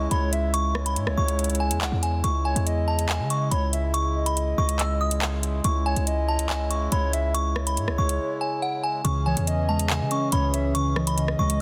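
Tense and ominous, this half-time drill hip hop cut in C# minor at 141 BPM sets a delicate, tinkling synth tine bell melody over a hollow, woody clarinet-like synth lead with chorus and delay, reedy, breathing harmonium chords, and a punchy, heavy 808-style bass placed up front, while an electronic drill kit of handclaps, rim clicks and metallic hi-hats drives beneath, and muted, dark felt-like synth keys join at 9.0 seconds in a dense, heavily limited modern mix with digital ambience.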